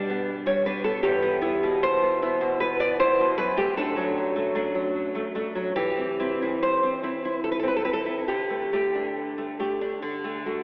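In a triple metre played with free, elastic rubato, this short passage from a longer romantic piece for solo classical guitar feels tender and sunny. The fingerpicked nylon-string guitar sits up front for the full 10.6 seconds, its fresh strings giving a warm, acoustic glow across a span from low E2 up to D5. An analog chorus and a diffuse ambient delay shimmer around the guitar, while a lush hall reverb with a long 2.9-second tail soaks the whole mix in a dreamy haze. That wash is filtered through a narrow telephone-like tone, lending the sound a nostalgic, faraway quality. The harmony drifts gently from G/B through Em, D/F# and C/E, arriving at a Dsus4 that settles onto D at 10.0 seconds.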